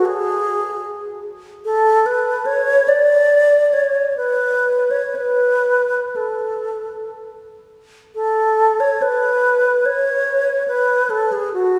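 Classical and mournful, this short cut from a longer piece features an unaccompanied alto flute playing freely in a lonely, rubato 3/4, its airy, vibrato-laden tone with crisp attacks and lifted highs sitting up front yet heard from further back amid a wet church reverb, shifting into a new section at 8.2 seconds.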